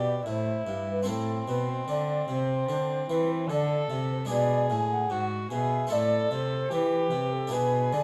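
A light reverb surrounds this serene, radiant fragment of a baroque-style sonata movement with continuo, tuned to A4 = 442 Hz and moving at a straight 74 BPM in 4/4. An airy wooden flute carries the melody with vibrato, tongued notes and expressive phrasing from a distance, while a single dark, nasal, gut-strung violin bows the second line and a reedy period-style cello with a smooth top holds the bass, both placed up front. A close-miked, dry, brilliant Italian-style harpsichord plucks its octave strings in accompaniment through all 8 seconds as the harmony passes from C through Am and G#dim before settling on E7/B.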